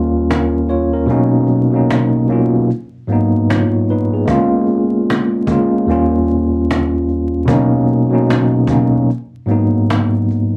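A clean, up-front tine electric piano, shaded by a low-pass filter and cassette tape, carries the swung chords of this melancholic, nostalgic lo-fi hip hop fragment, joined at 0.3 seconds by a snappy acoustic cajon with snares and vintage 12-bit sampler grit, the pair sitting in a moderate studio reverb with the feel of a home cassette recording and a bed of vinyl crackle.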